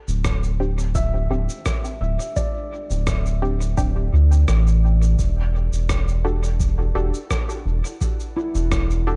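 A dark, warm digital ambience frames this peaceful, spacious ambient dub excerpt at 85 BPM in D mixolydian, where a round, up-front analog bass and a deep electronic kick anchor a lightly swung groove beneath a muffled shaker and rim click trailing dub echo, muted sawtooth chord stabs with chorus and dub echo, a felt-muted upright piano playing arpeggios through tape echo with audible action noise, and a very quiet granular cloud pad that enters at 1.6 seconds, all moving from D7sus4 to Em11 at 5.2 seconds.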